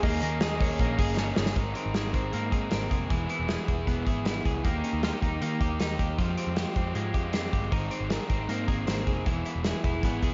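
Nostalgic and bright, this short cut from a longer jangly indie pop piece moves at 156 BPM in Ab major, with a loose, up-front acoustic drum kit, punchy and rolled-off on top, driving it alongside a round, foam-muted picked bass and a clean, compressed twelve-string electric guitar playing arpeggios that ring through slapback echo and digital delay. A crunchy overdriven guitar with tube saturation fills out the accompaniment, while a dark, slightly broken-up lead guitar through a small old amp sings a brief melody with subtle chorus in the background until 1.1 seconds, and crisp group handclaps sit barely audible in the mix. A drum fill at 1.2 seconds leads into the main section, where chords such as Abadd9, E and Fmadd9 unfold in a recital hall reverb that gives the mix a big arena sound.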